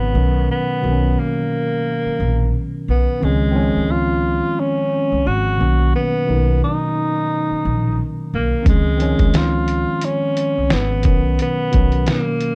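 A breathy, whispered tenor saxophone carries the melody up front in this cosy, dreamy lo-fi hip hop fragment at 88 BPM, its subtone and light vibrato softened by a low-pass filter. Beneath it sit a worn, slightly out-of-tune tine electric piano with cassette-tape colour and a woody pizzicato upright bass, drifting between Cbmaj7 and Dbmaj7 with a gentle 16th-note swing. At 8.7 seconds a compressed, muffled sampler-style drum kit arrives with a thumpy kick, fat snare, hi-hat and 12-bit grit, the bass stops at 12.1 seconds, and light reverb with a dark, warm production frames the close-miked sax.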